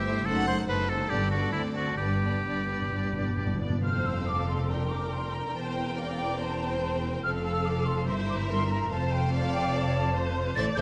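A quick 4/4 pulse of 126-147 BPM bends with rubato through this graceful, lively classical-period orchestral excerpt, which opens in G major and moves to F major at 3.8 s. A distant, smooth violin section carries the melody over a second, focused violin line. A clear, up-front solo oboe adds its own line until 3.6 s, and lush viola with soft attacks and portamento fills the accompaniment. Beneath them, a close, rich cello section and a dark double bass section anchor the low end, while hard-mallet timpani tap dryly in the background with a fill from 2.0 s; from 3.8 s a bright, pure flute ensemble with lifted highs adds a second line high above the melody, all within a moderate concert-hall reverb.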